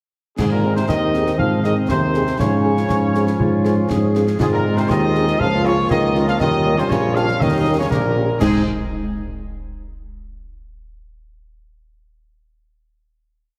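An up-front tuba with light vibrato plays bass on the beats beneath a distant, roomy trumpet section carrying the tune, a euphonium doubling it at the octave, smooth trombone chords, very quiet mellow French horn after-beat chords, a soft-attack woodwind counter-melody entering at 0.9 s, and a marching snare over bass drum with dark clash cymbals, forming a complete, spirited, rousing military-style march for wind band, heard through wet reverb and a heavily compressed radio sound, and closing on a final chord at 8.4 s.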